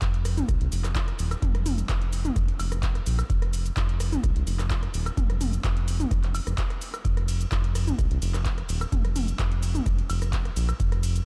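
This trippy, hypnotic acid house fragment opens at once with a deep analog kick, an electro analog drum machine and a round analog bass, pulsing in a straight four-four feel. The bass sits up front in the low register between Eb1 and C2, blending sawtooth, sine and triangle tones into a detuned, dark sound with a fast attack and sustained notes, and sidechain pumping gives it a breathing motion. Alongside it, the kick has an electronic thump that was re-recorded in a large room. The drum machine sits further back in the mix, drawing on handclaps, metallic hi-hats, ride cymbal, rim clicks, shaker, toms and woodblock, also carrying that large-room character. The overall mix stays fairly dry with little reverb, and the kick drops out at 10.9 seconds while the bass and drum machine carry on to the cut at 11.2 seconds.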